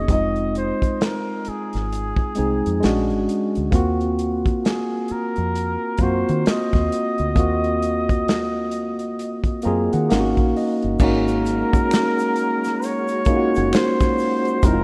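Smooth and soulful, this neo-soul R&B excerpt moves with an easy 16th-note swing as a distant, roomy flugelhorn sings a soft-edged jazz solo with vibrato over an up-front tine electric piano, a dark, foam-muted dub bass and a punchy small-room soul kit with dark cymbals. The chords pass from Fm7 through Bb7alt to Ebm69, and the electric piano plays a fill from 9.2 seconds before the harmony settles on Ab9sus4. At 11.0 seconds a clean tonewheel organ with key click and slow rotary speaker slips in behind, joined by a faint egg shaker with finger snaps, all in a rough home-demo mix with light reverb.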